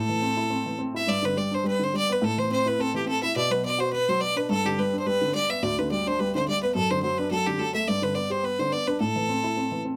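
Close, detailed microphones and a nearly dry room put both players up front, so every bow stroke and the piano's action noise come through in this short cut from a longer piece. It is a Celtic reel at 212 BPM in 4/4, with a light swing on the eighth notes and a mood that is dark, lively and wild. A single bowed fiddle carries the melody between G4 and E5, its tone bright and biting, with light vibrato and an intense edge. Beneath it, an upright piano accompanies from D2 up to G4, sounding dark, mellow and woody, with short sustain and an intimate feel. The harmony moves from Am through G, Bm and D/F# before returning to Am at 9.0 seconds. The fiddle drops out at 9.8 seconds, leaving the piano to sound alone until 10.0 seconds.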